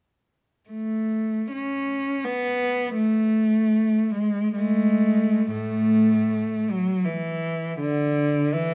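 Classical writing for unaccompanied cello, nostalgic and lyrical, unfolds in A major in a free 3/4 with rubato, the tempo drifting between 54 and 86 BPM. A single bowed cello sits up front, rich-toned with a soft attack, singing with vibrato and expressive portamento from 0.7 to 8.7 seconds, moving into a second section at 5.5 seconds. Close, detailed microphones and a light reverb frame this short cut from a longer piece.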